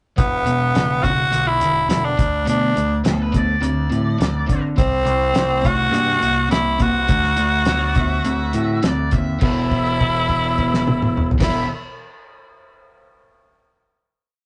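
A rough, wet small-room rehearsal recording captures this confident, swaggering classic rock piece at 104 BPM, where a raspy, gritty tenor saxophone leads up front with motif-based phrases over a crunchy, double-tracked guitar boogie figure, growling overdriven bass driving eighth notes and a cloth-damped, thuddy drum kit with a fat snare and dark cymbals, while an octave-fuzz lead guitar adds blues licks from 3.1 seconds before the band lands on a held final chord at 9.4 seconds.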